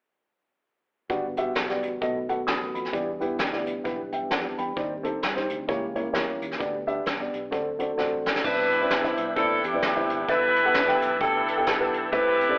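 A clear saxophone section with light vibrato and tape echo takes up the melody at 8.4 s in this soulful, uplifting uptempo gospel excerpt at 131 BPM, swinging in G major. Beneath it, a dark, woody upright piano with audible action noise carries the chords up front, while a mellow, flute-like tonewheel organ holds sustained chords through a slow rotary speaker and chorus vibrato. A round, foam-muted fingered electric bass sits in the background, and a roomy brush drum kit with dark cymbals and a punchy kick plays a fill just before the horns arrive, all heard through a moderate echo chamber and a telephone-like sound.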